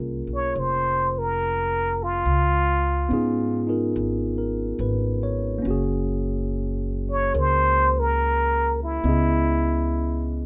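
A plunger-muted trumpet carries the melody from 0.3 s in this melancholic, wistful jazz ballad, its breathy, whispered tone with scooped notes and wah-wah colour sitting intimately up front. Beneath it, a bright, barky tine electric piano comps cleanly over chords moving from Bbm9 through Db9 and Gbadd9 to Dbm9, while a woody pizzicato upright bass anchors the low end. The fragment, cut from a longer piece, moves at a slow 70 BPM in 4/4 with a swung feel and sits in light reverb.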